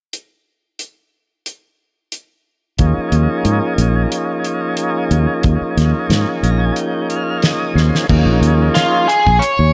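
A damped 70s drum kit with a fat snare and tight kick opens this bright, slick electric jazz fusion excerpt at 90 BPM with a light swing, before a round, foam-muted fingered electric bass and a smooth tonewheel organ through a slow rotary speaker join at 2.8 seconds on an Eb9sus4 chord, the organ and then the drums each taking a fill ahead of a biting, overdriven lead guitar that enters up front at 8.7 seconds, all set in a light reverb.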